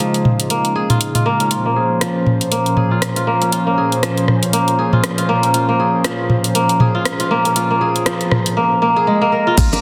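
Warm and earthy, this swung afro house excerpt at 119 BPM in Bb minor sets a crisp, ringing, fingerpicked kora, roughened by 12-bit sampler grit, low-pass filtering, dub echo and sidechain pumping, over a detuned, chorused sawtooth analog pad and an up-front electronic afro-pop kit of dark hats, rim clicks, toms, crash and a soft-clipped snare. It builds from 1.5 s on Bbm7 until, at 9.6 s, a punchy layered electronic kick, a smooth tube-saturated synth bass and grainy maracas slip in at the very end, joined at 9.7 s by tight, high-tuned bongos, all bathed in a lush hall reverb and a dense, heavily limited master.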